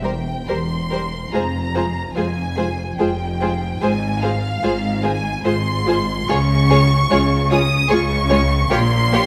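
The first violins carry the high melody with a focused, distant vibrato tone, while the second violins sing a closer, more expressive inner line above violas, cellos and double basses that provide a smooth, even accompaniment and bass for the whole of this brief 9.3-second excerpt. It is a solemn, elegiac slow romantic movement for string orchestra in F minor at 73 BPM in 3/4, played with rubato and moving from C/E through F minor and D-flat toward a half-diminished chord. Moderate scoring-stage reverb gives the lush bowed sound depth, with the cellos sitting slightly forward in the balance.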